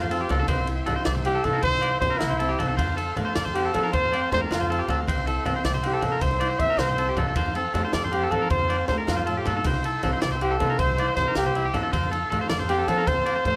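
Lightly reverberant, this joyful, carefree highlife guitar-band piece in 12/8 at 105 BPM in F major puts a dark, breathy jazz trumpet with vibrato up front over twangy, slightly broken-up electric guitar arpeggios, a woody pizzicato upright bass, thick-skinned low-tuned congas set back in a large room, a compact cocktail drum kit with a tight kick, high-tuned snare and dark ride cymbal, ringing agogo bells, a small fingerpicked nylon-string guitar in the background and a buzzy vintage combo organ holding very quiet sustained chords, while the harmony alternates between C and F.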